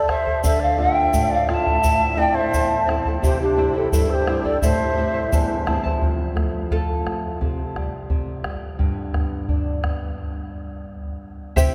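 Andean folk in A minor at 86 BPM, festive yet wistful, where a mellow, hollow pan flute carries the melody over a breathy, vibrato-laden quena second line until about 5.6 s, while a shimmering fingerpicked charango, a fresh-stringed flamenco guitar with audible finger squeak, a round, dry, up-front bombo and a grainy tube shaker fill in beneath, before the charango takes a solo from 6.0 s and the band breaks off at 10.2 s, all bathed in a wet cathedral reverb.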